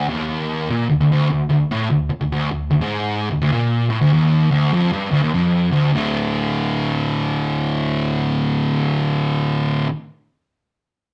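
A swung eighth-note feel in 4/4 gives this heavy, hypnotic metal fragment, cut from a longer piece, a loping, trance-like pull. A lone electric fuzz guitar carries everything from 0.0 to 9.9 seconds, picked in a low register between D2 and D3. Its distorted, compressed tone is double-tracked and sits up front, thick and warm with fuzz. The opening stretch moves freely outside any fixed harmony before the riff settles onto a D5 at 5.9 seconds, marking a shift into a new section. The rough rehearsal-room sound, colored by tube saturation and a light reverb, lends the playing a raw, grainy immediacy.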